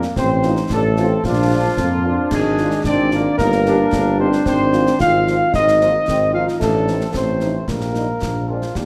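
A straight two-beat pulse drives this rousing, festive military-style march for wind band, a short section cut from a longer piece. Up front, the trumpet section carries the melody with a dark, smooth-topped classical tone and light vibrato, while a warm, vintage-sounding solo euphonium sings a second line beneath it. The trombone section holds clear, tight sustained chords in the background, and a mellow solo tuba sits prominently on the bass. A very quiet French horn section adds distant, roomy accompaniment from 0.4 s until 8.6 s. Concert snare drum, concert bass drum and clash cymbals keep the march going with a close, dry acoustic sound and shadowy cymbals, all set in a generous large-studio reverb that lends the band a festive sense of space.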